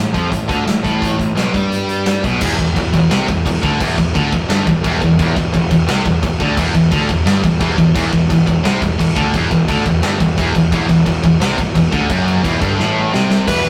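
A rough rehearsal-room recording with tube saturation and light reverb frames this aggressive, relentless heavy metal excerpt, cut from a longer piece at 173 BPM in 4/4 in E minor, tuned to A4 = 436 Hz. Two bright, high-gain distorted electric guitars play picked riffs in the background from the start, alongside a fuzzy, overdriven electric bass that sounds punchy, direct and amped. A big acoustic rock kit sits up front in a natural big room, with bright cymbals, a medium-tuned snare and a punchy kick driving crash, hi-hat, kick and snare. After an opening on an A9sus4 chord, the music settles onto E minor at 2.4 seconds and shifts into a half-time feel, where a third, double-tracked distorted guitar enters very quietly beneath the others. A drum fill leads toward the end, and at 13.5 seconds a dark, smooth overdriven lead guitar steps up front on a single high note as the passage cuts off.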